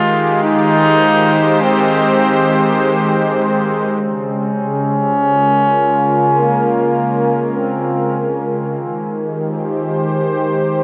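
In free time, this meditative, deep ambient fragment in Bb dorian, tuned to A4 = 444 Hz, sits on a warbling, detuned sawtooth pad with a slow attack and chorus, holding sustained chords from 0.0 to 10.8 s as the harmony moves from Abmaj7 to Bbm7 and back to Abmaj7. A clear, distant classical-style trombone carries the solo melody between Bb3 and F4 until 8.5 s, its notes trailing dub echo. Both parts sit up front in an echo-heavy mix with a moderate plate reverb and a dark top end, and the passage is cut from a longer piece.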